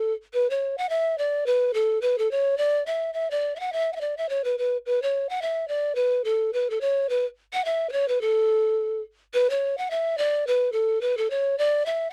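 A lone pan flute opens this cheerful, bright Celtic folk excerpt in A major at a brisk 214 BPM with a lightly swung feel, its breathy, hollow bamboo tone carrying a soft attack, chiff and vibrato as it plays up front between A4 and F#5, close-miked in a dry 1970s-style studio sound with a faint mains hum, the opening phrase returning at 9.3 seconds before the cut at 12.1 seconds.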